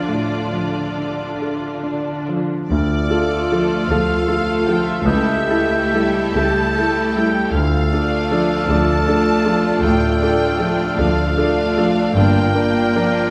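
Passionate and brooding, this rubato romantic excerpt in 12/8 pairs a polished, up-front concert grand piano with an intense, lushly bowed violin section carrying the melody over focused violas and smooth, distant cellos, before an airy flute, a classical clarinet, a tight, very quiet French horn section and rich double basses enter at 2.7 s and a closer second violin line joins at 3.1 s, the ensemble bathed in concert hall reverb.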